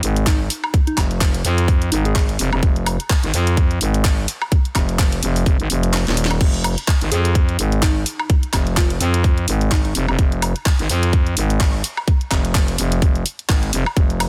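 Bass house with a gritty, aggressive mood, built on a swung sixteenth-note groove that stays on a single F minor chord throughout this section cut from a longer piece. A growling FM bass sits up front, thick and sustained with tube saturation and sidechain pumping. An electronic kick drum arrives at 0.3 seconds, tight and overdriven, and drops out from 5.9 to 6.4 seconds while a drum fill takes its place. A layered garage drum kit with a cracking snare, handclaps, hi-hat, ride, crash and woodblock runs the whole way with its own overdrive. In the background, a soft, round synth lead with a keys-like strike and a bright chorus shimmer plays short phrases from 0.3 to 2.2 seconds and again from 7.1 to 9.9 seconds, trailed by digital delay. The mix is dry and dense, with a heavily limited modern master.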